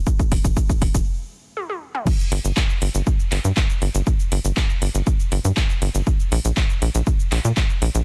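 A straight 4/4 pulse at 120 BPM drives this dark, melancholic melodic techno excerpt, where an up-front, punchy electronic kick and a house kit of metallic hats, handclaps, shaker, toms and crash, high-passed and pumping against the sidechain, build through drum fills and a stop before the drop at 2.1 s, as a tight sawtooth-and-square sequencer bass with a fast, decaying filter pluck drives between F1 and Bb2 in a dry, dense, heavily limited mix.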